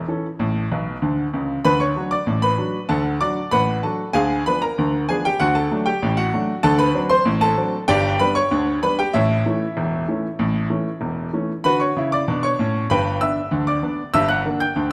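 A straight 2/4 ragtime pulse at 96 BPM carries this cheerful, playful excerpt in D major, where a clear, up-front baby grand piano plays solo across a range from E1 to G6 with natural, short-sustained tone, slips in a brief fill from 0.7 to 1.6 seconds before the second section begins, and moves through a chord path that passes from D to Ddim7, D7 and G before closing on G minor, all set in a moderate echo chamber reverb.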